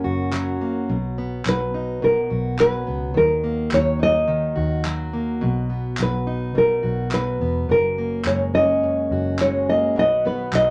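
Carefree and easy-going, this acoustic pop fragment sets a dark, full-bodied nylon-string guitar up front on the melody, its thumb-plucked tone carrying audible finger squeak, over a jumbo steel-string acoustic fingerpicked in plugged-in accompaniment. A round, foam-muted vintage electric bass sits underneath, while crisp group handclaps join at 0.3 s, all set in a moderate club reverb. Near the end, at 10.0 s, a smooth tonewheel organ slips in behind with sustained chords, key click and a slow rotary speaker.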